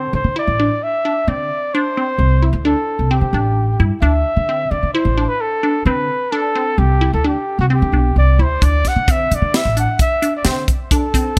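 Driving and bright, this progressive instrumental excerpt in 5/4 sets a breathy, dark-toned jazz trumpet with vibrato, scooped notes and delay over squelchy, phaser-treated synth pluck arpeggios and a woody, thumpy pizzicato upright bass, until a dry, tight funk drum kit with a high-tuned snare enters at 8.6 seconds, all within a light reverb.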